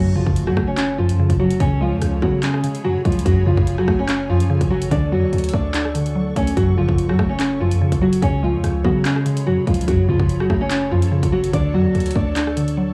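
A fingerpicked nylon-string guitar with audible finger squeak carries the melody up front, its full-bodied tone filtered and tinted by cassette tape and tape echo, over a woody, chorused mallet-like synth pluck, a blurred granular cloud pad drifting in the background and a punchy, heavy 808-style bass, before a drill drum kit with a hard-clipped kick, metallic hats, handclaps and rim clicks enters at 0.3 s, all in a tense, cold half-time drill hip hop groove at 145 BPM in F# harmonic minor that cycles through F#m, C#7sus4 and Dmaj7.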